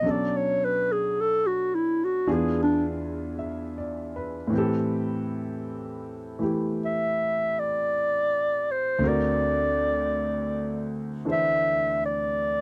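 Jazz ballad at a slow, swung 53 BPM with a romantic, late-night mood, the clarinet carrying the melody as a solo from start to finish over concert grand piano accompaniment that runs through all 12.6 seconds of this fragment. The close-miked clarinet is mellow with subtone, vibrato and scooped notes. The intimate piano offers deep bass and audible action noise, both instruments sitting up front in a dry, close 1970s-style studio sound with light reverb as the harmony moves through Bm9, E7b9, Am7 and D7b13.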